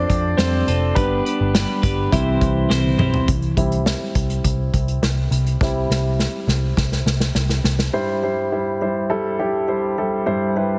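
A straight, steady four-beat pulse carries this uplifting, hopeful slice of piano-driven pop, cut from a longer piece. A warm, polished grand piano sits up front and takes the lead, moving through Fadd9, G and C. A bright, twangy twelve-string electric guitar rings out a clean, picked riff until 3.8 seconds. A dark, round, foam-muted vintage bass anchors the low end, while an unplugged kit played with bundle sticks, with a tight kick, medium-tuned snare, hi-hat and toms, adds fills before both drop out at 7.9 seconds and leave the piano alone to close. Light reverb and studio ambience surround the parts, and heavy multiband compression gives the whole mix a dense, radio-ready sheen.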